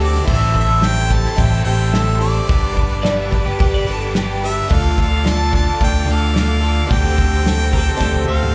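Folk rock with a heartland rock lean, this reflective, wistful excerpt from a live club set carries a bright, close-miked harmonica melody with light vibrato and slapback echo over a shimmering, octave-doubled twelve-string acoustic guitar and a raw, overdriven garage guitar riff tucked in the background. A round, amped fingered electric bass sits up front with a natural country drum kit of fat snare, punchy kick and dark cymbals, while a clear studio string section holds bowed chords behind them through Am7, G, Dm and D7sus4. At 3.0 seconds a clean, twangy twelve-string electric guitar adds a second line, and a drum fill arrives at 8.0 seconds.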